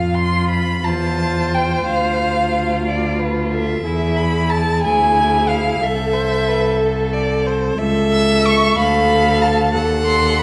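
A slow, rubato classical movement for string quartet in A minor and 6/8 at 61 BPM opens with a rich, bowed violin singing a yearning, elegiac melody with smooth, even vibrato, above a clear, intense viola accompaniment and an intimate, close cello bass with a soft attack. A second violin joins at 0.8 s with an expressive line coloured by portamento, while the harmony drifts from F through Dm and E toward a closing D#dim7. A wet recital hall reverb surrounds the players in this fragment cut from a longer piece.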